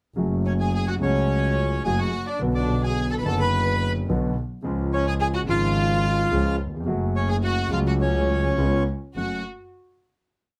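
Melancholic and tense, this short rubato tango in F# harmonic minor at 107 BPM sets a dark, mellow concert grand piano with audible action noise and a rich, softly bowed double bass, both pulsing in uneven groups of three and two eighths from 0.2 seconds, beneath a reedy, airy bandoneon melody built on motifs and partly doubled in octaves, shadowed by a lush, vibrato-laden studio violin section as the second line, all moving through F#m, Bm, C# and C#7 before settling on a final F#m chord at 9.2 seconds, captured with close, detailed microphones and light reverb.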